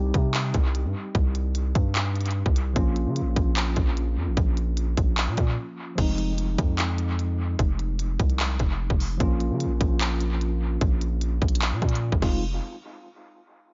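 A half-time trap groove at 149 BPM in F minor drives this melancholic, hard-hitting hip hop excerpt. An up-front electronic kit of hard-clipped kick, crisp hi-hat, handclaps and crash cymbal, wet with dub echo, pairs with a deep, sine-toned 808-style bass whose long, fast-attack notes decay beneath a mellow tine electric piano, low-pass filtered with dub echo and given a filter sweep from 6.0 s after a brief break at 5.6 s, moving through Cm, Bbm and Fm7 before the chords drop out at 12.4 s, all inside an echo-heavy digital ambience with rolled-off highs.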